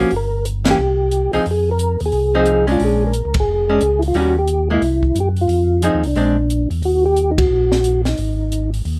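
A swung 4/4 groove at 178 BPM drives this greasy, soulful soul jazz organ trio passage in Eb mixolydian, cut from a longer piece. Up front, a soft, flute-like tonewheel organ carries the melody in its middle register, its percussive second-harmonic attack coloured by chorus vibrato and a slow rotary speaker. A second tonewheel organ, round and mellow with audible key click and vibrato, supplies the bass line through its own slow rotary. A clean, picked hollow-body archtop guitar comps with an electric tone before dropping out ahead of the close, while a compact cocktail kit sits lower in the mix, dry and acoustic, with dark cymbals, a high-tuned snare and a punchy kick. The band hits accents together at 0.6, 3.3 and 7.3 seconds over changes that move through Fm7, Bb7#9 and Eb7#9 before turning to Ebm, all set in light reverb with lossy compression artefacts in the sound.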